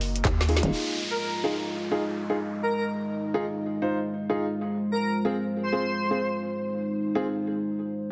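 Heavily compressed and radio-like, this bass house excerpt sits in a moderate plate reverb, with a bouncy, gritty mood and a swung sixteenth-note feel. A dark analog pad holds deep, moody, detuned chords throughout, its chorus and sidechain pumping giving the sustained wash a rhythmic, pulsing movement. In the opening moments, a hollow, punchy FM bass with tube saturation knocks beneath a layered garage kit of handclaps, metallic hi-hats and a woody snare, muffled through low-pass filtering, which plays a short fill before both stop at 0.7 s. A vintage grand piano joins at 0.5 s with smooth, filtered stabs and tape echo, and from 0.7 s a downlifter sweeps through the background. An airy, dreamy lead enters at 1.1 s, a soft, bright sine-and-noise unison with vibrato, chorus and echo, floating over the sustained pad.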